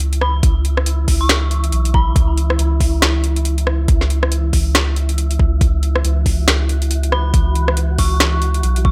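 A half-time pulse at 139 BPM in 4/4, with a 59% swing on the sixteenths, drives this heavy, cavernous slice of deep dubstep, cut from a longer piece and tuned slightly sharp to A4 = 441 Hz. An overdriven electronic kick with a knocking, layered character arrives at 0.4 seconds. It sits alongside an up-front, overdriven garage drum kit of metallic hi-hats, rim clicks and a woody snare. Underneath, a soft, round dub sub bass holds low between B1 and C#2, sustained and close, over a rootless Bsus4 harmony. A breathy, wind-like tuned noise texture drifts through the middle register with a slow attack and its own reverb. Above it, a dark, detuned FM bell plays an eerie, inharmonic, warbling figure high around B5 to C#6, colored by chorus, phaser and dub echo, appearing from 0.2 to 2.3 seconds and returning at 7.1 seconds, all set in a digital ambience.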